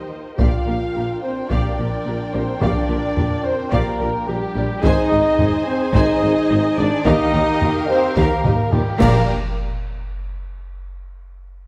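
Cinematic, epic orchestral film score in Bb mixolydian at 108 BPM, heroic and adventurous. A mellow French horn section and a focused string section hold sustained chords under two lush violin sections carrying the melody and a distant second line, with an expressive viola section in the background, while a clear trumpet section adds roomy stabs and a dark double bass section, a cello section and a tuba form the bass. A heavy-sticked, vintage-sounding taiko ensemble drives the piece from 0.4 seconds, cymbal swell, clash cymbals and concert bass drum join at 7.1 seconds, and a drum fill leads into a band accent at 9.3 seconds, all in a moderate scoring-stage reverb.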